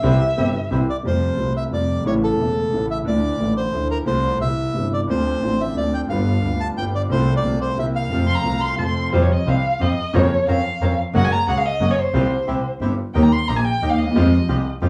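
A dark, reedy bandoneon carries the melody from 0.9 to 8.8 s in this elegant, passionate tango excerpt, a rubato 3/4 at 179 BPM in F major that turns to F minor at 9.1 s, while a second, close-miked bandoneon adds full, dry stabs. An expressive violin with vibrato and portamento takes the lead from 9.1 s. A clear concert grand piano with audible action noise and long sustain provides the accompaniment, and a bowed double bass played sul tasto gives a pure, floating low end, all set in a small club room heard from further back.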